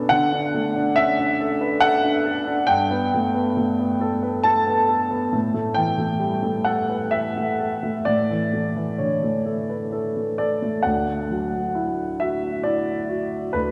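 A baby grand piano opens this short cut from a longer neoclassical minimalist piece, playing alone in D major at a slow, rubato 64-70 BPM in 3/4. Its tone is warm and a little worn, sitting up front and present, with a long sustain that lets each chord hang. The harmony moves from D through Gadd9 to A, then settles on Dadd9 when a new section begins at 10.8 seconds. The piano ranges from D2 up to A5, and a wet cathedral reverb with a 4.8-second decay wraps it in the resonance of a church or concert hall. The mood is hopeful and peaceful, and the passage closes at 13.7 seconds.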